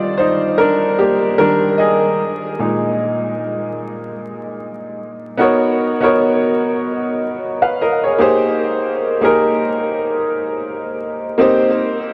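A dreamy haze of huge ambient reverb and vinyl crackle surrounds this short hip hop passage, cut from a longer piece. A lone upright piano carries the whole 12.1 seconds, sitting up front with a woody, vintage character that stays clear even through the wash of the room. A low-pass filter softens its top while a delay adds echoes, and the 16th-note swing gives the playing a relaxed, cosy lilt. The harmony drifts from Ebmaj9 to Bb7sus4, then shifts at 5.4 seconds to Bmaj9 and Bb13sus4 before settling on Eb6. The piano ranges from the low register up into its upper middle, and the long reverb tail lets each chord hang in the air.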